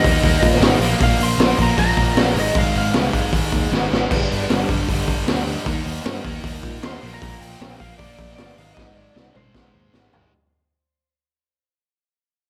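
A straight 4/4 pulse at 154 BPM drives this heavy hard rock excerpt, set by a raw garage drum kit of kick, snare, hi-hat, toms and crash that sits up front with a punchy kick, a high-tuned snare and a gritty, saturated tone with a rolled-off top. A double-tracked, overdriven electric guitar plays a riff throughout, its picked sound warm and up front, while a picked electric bass adds a bright, growly low end. A dark, slightly broken-up lead guitar with tape echo carries the melody, heard at the start and again from 6.9 seconds. The harmony moves through Eb5, Bb5, Ab5 and G5 before returning to Eb, Bb and Ab, with drum fills arriving around 3.7 seconds and again from 8.8 seconds. Light reverb and a small room ambience surround the band, and the whole passage fades out across its length as a clip from a longer piece.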